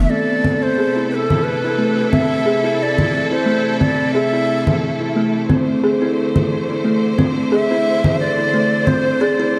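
This hypnotic, earthy organic downtempo fragment, cut from a longer piece, features a breathy, reedy low ney carrying the melody up front. A lush, bowed studio string section holds sustained chords at a distance beneath it, and a woody, hollow-toned kalimba plays ringing arpeggios through a low-pass filter sweep and digital delay. Overdriven electronic congas join at 0.4 seconds, sounding produced and re-recorded in a large room. A very quiet quartz singing bowl adds a pure, meditative texture with slow beating, struck with a felt mallet. The harmony moves from A minor to a D5 chord at 5.5 seconds, and a moderate echo-chamber reverb with small-room ambience holds the blend together over a lightly swung groove.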